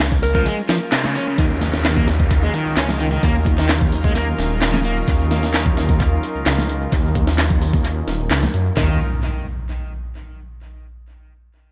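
A straight, energetic breakbeat drives this raw excerpt: a gritty, pitched-up sampler-style kit with a thumpy kick and high-tuned snare, plus layered electronic handclaps and shaker, both soaked in studio reverb and tape echo, while close, dry bongos and congas sit in the background. Up front, a thick, menacing detuned saw bass rumbles alongside a crunchy, double-tracked overdriven guitar riff that plays from 0.4 to 5.0 seconds and returns briefly at 8.8 seconds, as a dark, bowed string section holds soft sustained chords behind them, pumping with sidechain and low-pass filtering, with a filter sweep starting at 1.4 seconds. Electronic downlifters and impacts hover in the background of the echo-heavy, lightly reverberant mix.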